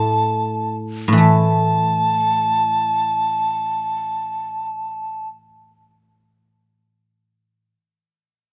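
Festive yet pastoral, this Chinese traditional passage, cut from a longer piece, unfolds in free time, easing into a slower pace over its first 1.2 seconds, with instruments tuned to A4 = 439 Hz. A mellow bamboo dizi carries the melody around A5, its hollow, pure tone edged with a buzzing membrane, a crisp attack and vibrato, and it sits close and up front. Beneath it, a guzheng played with fingerpicks supplies accompaniment between A2 and A3, its silvery strings ringing out just as prominently. The dizi falls silent at 5.3 seconds, leaving the guzheng alone until 7.8 seconds. Close, detailed microphones capture both instruments within a moderate recital hall reverb of about 1.8 seconds.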